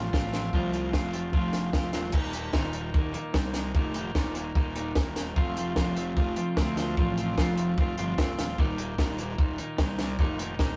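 A rough rehearsal-room recording with light reverb opens this short indie rock excerpt, cut from a longer piece and moving at 149 BPM in a straight 4/4 with a carefree, jangly mood. A clean, picked electric guitar sits up front with a dark tone, playing a riff that spans Eb2 to F4 over chords moving from F to Eb5, back to F, and on to Ebsus2. Beneath it, a fingered electric bass runs through overdrive and fuzz, its warm, direct-and-amped sound holding the low end between Eb1 and D2. A compact cocktail drum kit, acoustic, dry and also up front, joins with a punchy kick, a high-tuned snare, hi-hat and dark-sounding crash cymbals. After a brief opening passage, a longer second section begins at 2.1 seconds and carries the band to the end at 10.8 seconds.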